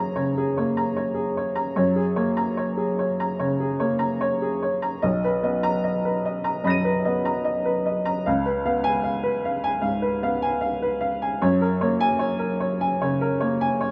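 Rubato in 4/4 at about 75 BPM, this melancholic, reflective neoclassical minimalist piano fragment, cut from a longer piece and tuned to A4 = 436 Hz, features a solo upright piano with a woody, boxy, up-front tone in light reverb, moving from F#add9 through Bmaj7 and C#7 before returning to F#add9 at 11.4 seconds.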